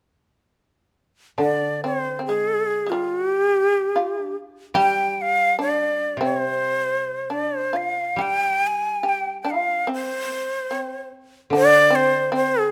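At 1.4 seconds a breathy, up-front shakuhachi enters with an expressive, softly attacked melody full of vibrato, alongside a buzzing, plectrum-plucked fretless shamisen on a second line and a mellow, woody koto accompaniment played with fingerpicks. This austere, calm piece of Japanese chamber music moves in a rubato 2/4, captured by close, detailed microphones in light reverb. The passage is cut from a longer piece, with all three instruments ending together at 12.7 seconds.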